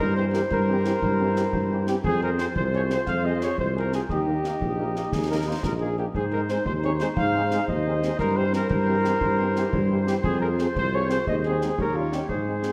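A mellow, close-miked trumpet section carries the melody up front in this spirited, proud military-style march for wind band in a straight 6/8. A clear woodwind section with light vibrato plays the second line, a warm, smooth-topped tuba anchors the bass, and concert bass drum and snare with dark cymbals sound from a small room. From 0.2 s a French horn section adds distant, roomy accompaniment in the background, all set in a wet recital-hall reverb, in this short cut from a longer piece.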